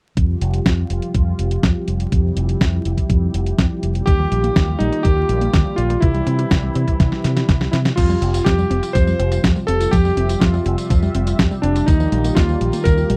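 A dry, close recording in a 1970s studio style with a layer of vinyl crackle carries this sunny, romantic italo disco passage, cut from a longer piece. A smooth, detuned analog pad with chorus holds sustained chords over a bright, fingered electric bass with an envelope filter, while a thumpy electronic kick and a clean 12-bit drum machine supply crash, hi-hat, a medium-tuned snare and tambourine, with a drum fill from 7.0 to 8.0 seconds. From 4.1 seconds a vintage, clangy electric grand piano steps up front with the melody through tape echo, as a punchy, detuned sawtooth pluck plays arpeggios through the same echo in the background.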